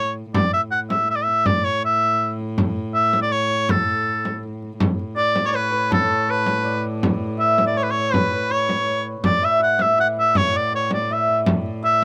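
An ancient, rustic medieval dance in A major moves at 162 BPM in a straight 3/4, cut from a longer piece. A bright shawm carries the melody up front between A4 and F#5, its folk-style line sung with vibrato and a smooth top. Beneath it, a single fretted viola da gamba holds a dark, woody, bowed drone on A2 with light vibrato and a soft attack. A frame drum, also up front, enters at 0.3 seconds, played with hard hands and given a warm, compressed, saturated tone. At 5.2 seconds a hammered dulcimer adds a shimmering, ringing second line in the same register as the shawm, all set in a light reverb.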